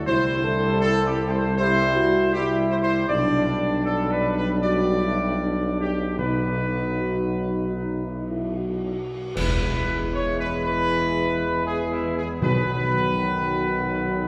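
A dark, soft-attacked trumpet section carries the melody up front in this majestic, regal classical fanfare at 78 BPM in 4/4, backed by smooth-topped French horns, a warm trombone section sustaining chords in the background and a mellow tuba with light vibrato on the bass line, all set in a wet church reverb. At 6.2 s the timpani enter with hard, articulate mallets alongside a cymbal swell, bright clash cymbals and concert bass drum, leading into a full band accent at 9.4 s as the harmony settles into E major. The recording is cut from a longer piece.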